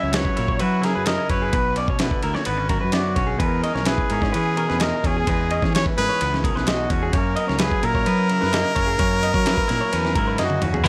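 Intricate and bright, this math rock and midwest emo excerpt at 129 BPM in 4/4 sets a clear, smooth-topped trumpet melody with vibrato and slapback echo up front, over a twangy clean electric guitar in the background, slightly broken-up lo-fi arpeggios from a guitar through a small old amp, a growly fuzz-overdriven fingered bass, and a gritty, up-front sampler-style drum kit with a thumpy kick, moving through F#7, Bmadd9 and E6 in light reverb until a drum fill at 10.4 seconds and a double-tracked, overdriven cranked stack guitar riff bursting in at 10.8 seconds.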